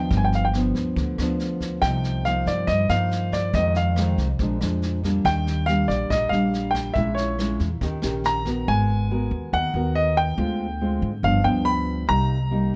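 A straight bossa nova groove in 4/4 is carried by a jazz drum kit played with brushes, its boomy kick, rim click and snare sounding natural in a small room until the kit drops out at 8.5 seconds, while a woody, thumpy upright bass is plucked beneath it. Up front, a dark, thumb-plucked nylon-string guitar lays down the accompaniment and a clear baby grand piano with short sustain sings the romantic, sunny melody. Heard close and detailed with little reverb, this brief cut moves through jazz changes from G7 and Cm7 to Ebmaj7 before shifting to Abm9 at 8.7 seconds.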